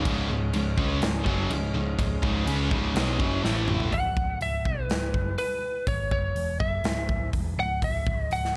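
A straight, driving 4/4 pulse from a big, punchy rock drum kit with bright cymbals carries this heavy hard rock passage, where three picked riff guitars (one crunchy and overdriven, one double-tracked and high-gain, one scooped and distorted) stack over a round, dark hollow-body bass and a reedy tonewheel organ with key click and slow rotary speaker, until a drum fill at 3.4 seconds leads to 3.9 seconds, when the riffs and organ stop and a twangy, compressed, slightly broken-up lead guitar takes the melody up front over bass and drums in a roomy studio reverb.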